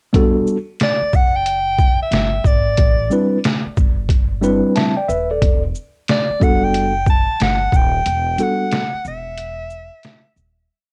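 A vibrato-rich soprano saxophone with scooped notes and a soft attack sings motif-based jazz phrases from 0.8 seconds over a worn, slightly out-of-tune tine electric piano comping in rootless voicings with short fills, a woody, dark pizzicato upright bass with ghost notes and chromatic approach notes, and a gritty, pitched-down sampler-style drum kit with a thumpy kick and quarter-note hats, the sax, piano and drums all passing through cassette tape in this smoky, mellow jazz-hop piece that breaks down and fades out from 8.1 seconds.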